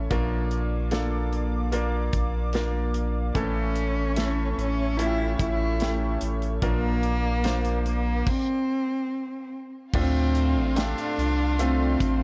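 A dark, warm production in a small room frames this brief, melancholic pop ballad cut from a longer piece, moving at 73 BPM in a straight 4/4 in D minor with a sense of longing. A clear, polished concert grand piano carries the accompaniment over a thick, saturated sub bass that sits up front, while an airy, breathy pad with a chorus effect holds sustained chords in the background. An acoustic studio drum kit with a punchy kick, medium-tuned snare, hi-hat and crash cymbal keeps time with a rolled-off top. At 3.4 seconds a dark, intimate solo cello takes the melody, bowed sul tasto with a soft attack and vibrato and placed close. After a stop from 8.3 to 9.9 seconds, a rich, lush violin section enters in the background with a second line over a Dm7 chord.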